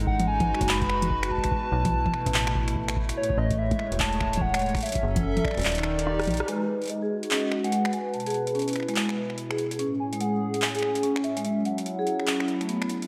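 A swung groove in four drives this eerie, glitchy IDM piece, cut from a longer track. A booming analog drum machine sits up front with metallic hats, finger snaps, handclaps, rim clicks and toms, all given a slapback echo, while an electronic kick thumps deep and tape-warm in the background. A hollow, flute-like pad holds sustained chords with chorus and sidechain pumping, and a metallic FM bass with a fast, decaying attack anchors the low end. Above them a warbling, nostalgic lead carries the melody, its detuned square and sawtooth tones thickened by vibrato, chorus, slapback and tape echo. The kick drops out at 5.7 seconds and a drum fill arrives at 6.1 seconds, leading to a band accent. At 6.5 seconds a dark, ringing vibraphone enters with low-pass-filtered arpeggios and digital delay, all set in a lush hall reverb that gives the mix a big arena scale.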